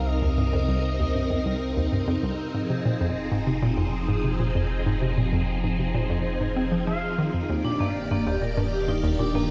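Expansive and hypnotic, this slice of sequencer-driven ambient space music moves at 97 BPM in a straight 4/4, drifting through Cm7, Fm7 and Ebmaj7 in a dark production with a moderate concert hall reverb. A swirling, vintage string machine with ensemble chorus and phaser sits up front holding sustained chords, while a round, deep analog bass with tube saturation anchors the low end and a hollow, bouncy square-wave pluck with chorus and tape echo repeats its riff throughout. A smooth, mellow portamento lead with lush chorus and tape echo sings a brief melody in the background at the opening and again near 6.9 seconds, and a metallic, ringing vibraphone with medium hard mallets enters at 7.6 seconds with bright arpeggios through tape echo.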